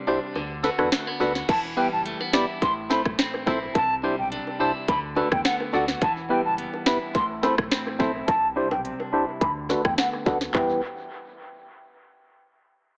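A mellow, hollow concert flute carries the melody from 1.5 seconds, its pure metal tone shaded with vibrato, tongued notes, a low-pass filter and dub echo over a hypnotic, sultry dancehall groove cut from a longer piece. Beneath it, an electronic, overdriven island pop drum kit sits up front with a tight kick, sharp snare, metallic hi-hats, rim clicks, handclaps, finger snaps, toms and crash cymbal, all soaked in dub echo, though the kick holds off until 1.5 seconds. A slightly broken-up electric guitar picks arpeggios through a low-pass filter and echo, while a percussive, organ-like stab with chorus and a noise layer fills in the accompaniment. A deep sine-and-triangle sub bass with its octave hums in the background, and very quiet, high-tuned vintage bongos played with soft hands add a faint patter. The chords cycle through Em, Am, Cadd9 and D6 under a filter sweep, and the whole mix is bathed in moderate spring reverb and heavy echo with an AM-radio character.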